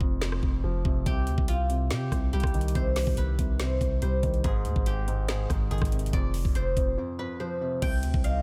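A half-time trap groove at 142 BPM drives this eerie, melancholic hip hop excerpt in C harmonic minor, its up-front electronic kit pairing a knocking kick and woody snare with metallic hats, rim clicks and crash, over a deep, sine-toned 808 bass that decays from each fast attack. A soft felt-muted upright piano adds intimate, thick-felted chords beneath, and from 1.1 s a silvery guzheng carries the melody, its fingerpicked notes ringing through a delay. At 7.8 s a smooth, gliding portamento lead slips in far back with chorus, vibrato and delay, all in a dry, close sound with little reverb.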